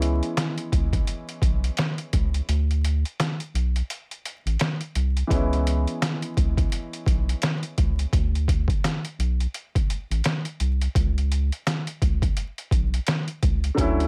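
Boom-bap hip-hop at 85 BPM with a 59% swing on the 16ths, moody and gritty, this excerpt sets a woody, mellow upright piano behind a cassette-tape haze and filtering, playing until 8.1 seconds and briefly returning at 13.7 seconds over C#m7 and D5 chords, while a round, deep, wave-folded analog bass holds the bottom up front and an overdriven, compressed, pitched-down sampler-style drum kit with a thumpy kick, medium-tuned snare and hi-hat punches through, its kick muted from 2.5 to 5.3 seconds, all under light reverb and vinyl crackle.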